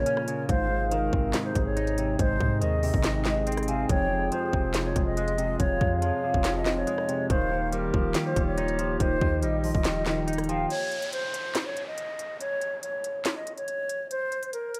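Melancholic and menacing, this trap cut from a longer hip hop piece moves at 141 BPM in a half-time feel, its dreamy mix soaked in plate reverb. An airy, close-miked concert flute carries the melody with vibrato and a crisp attack, sitting up front in a diffuse ambient delay, while a woody clarinet-like synth lead with chorus adds a dark second line above it. Beneath them, a semi-hollow electric guitar plays clean, fingered, compressed accompaniment through lush chorus, and a mellow, flute-like soft pad holds sustained chords over a progression of Ab, Fm and Ebadd9. A deep, boomy 808-style bass and a tape-warm trap kit with a hard-clipped kick, sharp snare, crisp hats, handclaps and rim clicks drive the groove. At 10.7 s the guitar, pad, lead and bass drop out for a break, leaving the flute and drums to play on until the close at 14.8 s, with an electronic downlifter sweeping beneath them until 14.1 s.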